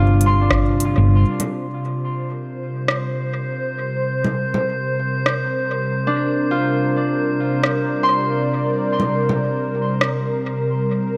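A smooth, detuned sawtooth pad with chorus holds sustained chords up front throughout this deep, hazy ambient dub fragment at 101 BPM in 4/4, with a swung sixteenth feel and tuning at A4 = 439 Hz. A round, punchy hollow-body electric bass sounds only until 1.2 s alongside a single deep analog electronic kick, while a ringing, fingerpicked Celtic harp plays arpeggios through a low-pass filter and tape echo, returning at 6.1 s. An organic electronic kit of congas, crisp hi-hat and rim click, overdriven and fed into dub echo, keeps time; a glassy sine texture of drifting overtones enters at 2.6 s, and a wet echo-chamber reverb surrounds the piece.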